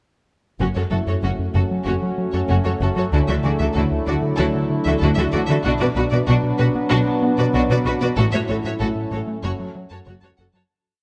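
Cinematic hybrid orchestral and electronic film score with a futuristic, brooding mood, in which lush violin sections carry a driving ostinato melody and a background second line over an intense viola ostinato, a rubbery, bouncy square-wave bass pulses up front beside rich cellos driving a bass ostinato that focused double basses double, mellow French horns and warm trombones add slow swelling chords alongside an evolving, nasal analog drone with chorus that enters at 1.3 seconds, and a very quiet baby grand piano scatters sparse dark single notes with audible action noise, the whole piece sitting in a moderate scoring-stage reverb before fading out from 8.2 seconds.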